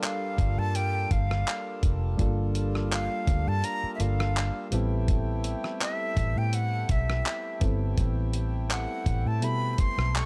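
Longing and moody, this short cut from a longer contemporary R&B piece moves at an unhurried pace with a light swing on the sixteenths. A breathy, bright jazz flute carries the melody in a high register, its straight tone marked by a crisp, chiffy attack. Beneath it, soft electric-piano-like synth keys with a chorus effect offer mellow, decaying accompaniment, while a hand-pumped harmonium sits further back holding reedy sustained chords. The dusty, sampler-style drum kit is up front and gritty, with a thumpy kick, rim click, hi-hat and handclaps, and a foam-muted fingered electric bass joins at 0.4 s with a round, punchy tone. The harmony shifts from Gm9 to Am9 at 4.7 s, all wrapped in a digital ambience within a dark, warm production.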